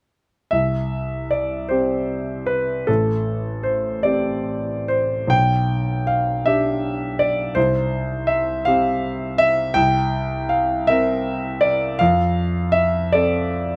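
Close, detailed microphones and a light reverb frame a clear, present grand piano placed up front in this serene, tender romantic nocturne, cut from a longer piece. The solo piano moves in 6/8 with flexible rubato, ranging from A1 to G5 as the harmony drifts from C through Am7 and G/B before a C7 turns toward F near 12.0 seconds.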